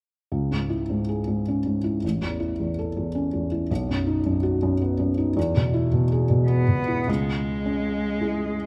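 A soft, felt-muted upright piano opens this hopeful, intimate neoclassical fragment in a rubato triple metre, its mellow accompaniment sitting up front with audible action noise as the harmony moves from C#m through A, B and E. At 6.5 seconds a single bowed cello enters as a second line, smooth and even with a rich vibrato, shortly before the music turns back to C#m. Close, detailed microphones capture both instruments within a moderate recital-hall reverb.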